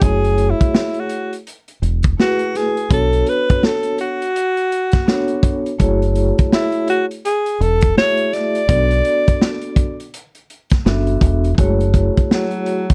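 Jazz-hop at 83 BPM with a swung 16th feel in F# minor, this nocturnal, mellow excerpt sets a breathy, softly vibrato-tinged alto saxophone solo over soft-mallet vibraphone with a slow motor shimmer, a round, deep dub fingered electric bass that drops out at 12.1 seconds, and a gritty, saturated breakbeat kit with a tight kick and dark, rolled-off top, all captured dry and close like a 1970s studio session as the chords move through F#m9, Bm9 and Bm7.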